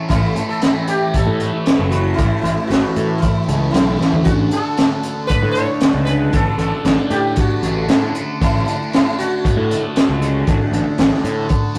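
A vintage, mellow combo organ holds very quiet, clean sustained chords as a bright, double-tracked fuzz guitar opens this hazy, hypnotic psychedelic rock fragment with a compressed, phaser-tinged riff. A buzzing, plectrum-plucked sitar carries the melody, its sympathetic strings shimmering above the din. Underneath sits a round, punchy fuzz bass, overdriven and placed up front, while a crunchy breakbeat kit in a small room gives a dark, smooth groove with a tight kick, a high-tuned snare and a rolled-off top. A drum fill arrives at 4.0 seconds, just before the harmony shifts from A to D over A at 4.3 seconds. The whole take has the rough feel of a rehearsal room, with light reverb and warm saturation thickening the hypnotic straight-time pulse.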